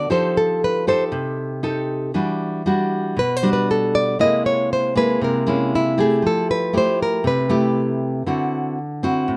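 Bossa nova with a sunny, romantic mood, cut from a longer piece, in which two fingerpicked classical nylon-string guitars sit up front: one carries the melody with a dark tone and plate reverb, while the other plays full-bodied, deep accompaniment through F9, Em9, C7b13, Fmaj9 and D9, the melody stopping at 8.7 seconds as the accompaniment continues to 9.4 in a lightly reverberant room.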